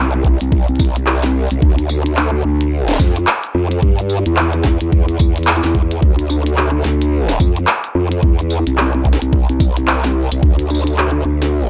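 A growling, detuned bass opens this funky, playful glitch hop excerpt, its aggressive wobble shaped by a formant filter and thickened with chorus and tube saturation as it sits low and sustained at the front of the mix. The electronic kick arrives almost at once, a layered, knocking thump pushed hard with overdrive. By 0.4 seconds a glitchy drum kit joins in with a tiny snare, clicky hi-hats, handclaps and tambourine, all overdriven and carrying the boxy character of a small room. The groove swings its sixteenths in 4/4, giving the busy percussion a loose, bouncing feel. The dry, close mix keeps the three parts punchy and immediate until the kick drops out at 10.6 seconds, the glitchy kit follows at 11.5 seconds, and the bass carries on briefly to the end of the cut.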